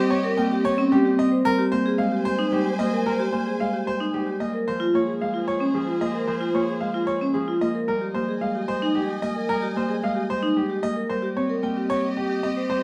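In a straight, steady three-beat metre, this hypnotic, urgent piece of minimalist classical pattern music moves through lush extended harmonies, taken from a longer work. A fingerpicked Celtic harp sits up front with a ringing acoustic accompaniment in its low-middle register, while a vibraphone struck with hard mallets spins metallic arpeggios, its medium motor vibrato and boxy small-room character adding a shimmering pulse. Above them, a bright concert grand piano carries the melody from just after the start, its brilliant, open tone and short sustain placed close to the listener. A clear symphonic string section holds focused bowed chords higher up, quieter than the other parts. The sound is close and detailed, with a light reverb giving the blend a touch of air.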